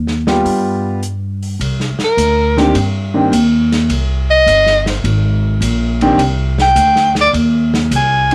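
Small-group jazz in a swing and bop vein, this short cut from a longer piece has a swinging, smoky mood with a strong swung feel in 4/4. A woody pizzicato upright bass with steel strings opens the track up front, joined almost at once by an open acoustic drum kit playing hi-hat, ride and a medium-tuned snare, its dark cymbals and airy small-room sound colored by cassette tape. An intimate concert grand piano enters at 0.3 seconds as accompaniment, natural and deep in the bass, with its action noise audible. At 2.0 seconds a bright soprano saxophone takes the melody as a jazz-style solo, present and up front with vibrato and its own cassette tape coloring, over harmony that moves from Cm9 through Abmaj9/G to Cmadd9. Light reverb and the home cassette recording shape the overall sound.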